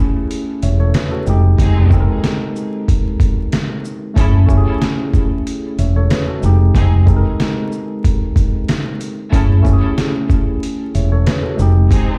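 A swung 4/4 groove drives this dark, moody boom-bap hip-hop excerpt, built on a sampler-style drum kit that sounds compressed, pitched down and gritty, with a thumpy kick, medium-tuned snare, hi-hat and shaker sitting up front. A round, dark fretless electric bass enters at 0.6 seconds, direct and amped and just as forward in the mix, holding to a low register. The tine electric piano opens the clip with a clean, warm tone heard through its built-in speakers, filtered at both ends as its chords shift between F#m9 and Fm9. Faint bowed string stabs arrive at 1.6 seconds, lush yet focused, with vibrato, a filtered edge and a digital delay. The whole mix carries vinyl crackle and a large studio reverb, as if played on a big sound system in a bare room, and a break lands at 11.9 seconds near the close of this cut from a longer piece.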